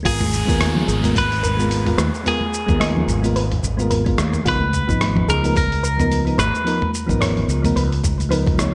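Sunset chillout in G# dorian at 109 BPM with a lightly swung 16th feel, this wistful, relaxed excerpt rests on soft, chorused electric-piano-like synth keys moving from G#m69 to C#13 over a dark, round fretless bass, while a clean, twangy electric guitar carries the melody until 6.9 s and a gentle pluck with 12-bit sampler grit arpeggiates in the background. The rhythm pairs a dusty, gritty sampler-style kit of hi-hat, rim click, shaker and toms, treated with gated reverb, with a deep, overdriven electronic kick and very quiet ringing congas. An electronic downlifter sounds from 0.1 to 4.5 s, all within a moderate plate reverb and bright 1980s-style digital production.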